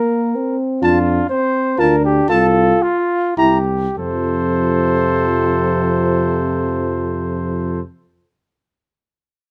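Classical brass quintet in a stately, rubato triple metre: a punchy flugelhorn second line and a warm euphonium accompaniment open, joined at 0.8 seconds by a clear trumpet melody with light vibrato and a soft attack, a French horn set in the background, and an up-front mellow tuba bass, all in light reverb as the pace slows through the first 4.0 seconds of this fragment of a longer piece.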